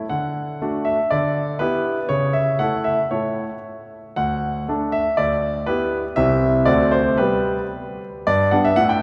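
In a 2/4 with gentle rubato between 110 and 124 BPM, this cheerful, graceful classical-period piano sonatina in D major is cut from a longer piece, with a clear, natural grand piano playing solo and up front, ranging from C2 to G5, bathed in the long, wet reverb of a church as its harmony turns through D, Em7/D and A before moving to C and D7 and landing on G at 7.2 seconds.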